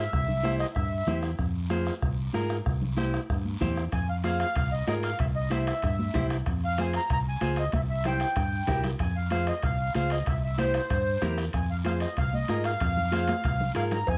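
Cumbia at a brisk 189 BPM in F harmonic minor, this fiery, driving cut from a longer piece rolls over a straight 4/4 feel, with chords swinging between C and F minor and shifting to C7 later on. A reedy, sweet accordion sits up front with plate reverb and a light tremolo tuning, sounding a brief phrase at the very start before returning at 3.9 seconds to carry the melody through to the close. Beneath it, a round, amped fingered electric bass anchors the low end prominently, while a dark, clean picked electric guitar fills in the accompaniment. The percussion bed pairs a soft-beaten bombo with a raspy guiro and bright, damped, high-tuned congas tucked in the background, and ringing metal-shelled timbales and cowbell join at 3.9 seconds, with drum fills around 7.7 and 13.3 seconds. The whole recording has a worn, warbling cassette character, with wavering pitch drift, a dulled top end and a light reverb.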